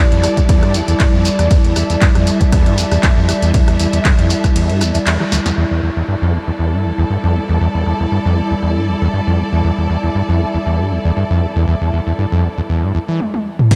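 Soaked in a huge, dreamy reverb, this trippy, raw acid house excerpt at 118 BPM in E phrygian rides a squelchy, gritty overdriven acid bass riff and an up-front, punchy electronic kick, joined by a dry analog drum machine, a grainy shekere in the background, a warbling lo-fi tape-like pad holding Em7, and a lush symphonic string section with vibrato, the pad, bass and strings all pumping to the sidechain, until the kick drops out at 4.6 s and a filter sweep takes over the bass from 5.6 s.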